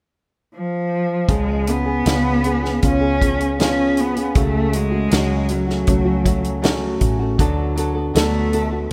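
Melancholic and heartbroken, this dry pop ballad excerpt opens with a single bowed cello at 0.5 s, singing up front with expressive vibrato and portamento, before a background grand piano, a small, dark fingerpicked nylon-string guitar with digital delay, a round, foam-muted vintage electric bass and a natural small-room drum kit with a punchy kick and medium-tuned snare all enter at 1.3 s under chords moving from C#7 through F#m/C# to Bm7/D.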